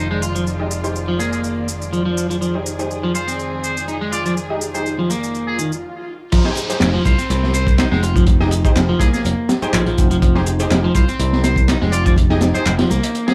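A buzzy, metal-muted trumpet carries a vintage-toned melody with tape echo over veiled, con sordino strings pumping against the mix, a twangy guitar riff just at the edge of break-up, and a growly picked bass on Fm7, while an electronic shaker and handclaps keep a lightly swung 123 BPM breakbeat groove and a bold, detuned orchestra-hit-like synth stab punctuates with reverb and echo. The strings fall away at 5.8 seconds as a background swell and downlifter lead into a brief break, and at 6.3 seconds a crunchy, gritty breakbeat kit with dark cymbals and a high-tuned snare drops in for a playful, energetic stretch of this longer piece, all set in a small room ambience.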